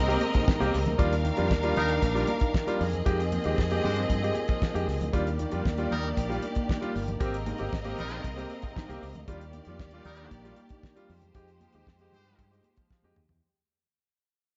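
A lightly reverberant mix fades throughout this joyful, danceable disco passage, where a dry 70s drum kit with a fat snare and an up-front fingered electric bass support a grand piano with audible action noise, clear, lush bowed strings with vibrato on a second line, distant dark French horn chords, very quiet high-tuned congas and punchy, bright vintage horn stabs from 1.8 s, moving through Abmaj9, Ebmaj7 and Fm9 until a drum fill at 12.9 s.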